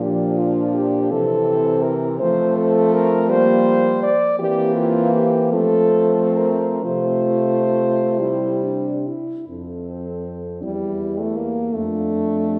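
A mellow French horn carries the melody up front in this serene, lyrical classical passage for horn quartet, cut from a longer piece. Beneath it, a dark horn with light vibrato sings a second line. Another horn, also placed up front, supplies accompaniment with light vibrato and a soft attack, while a fourth horn with similarly rounded onsets anchors the bass. The music sways in a lilting compound metre with a flexible, rubato feel, and a brief contrasting phrase begins at 9.5 s and carries through to the close at 12.6 s. The quartet is heard from further back in a scoring stage, wrapped in a wet reverb that gives the ensemble a spacious glow.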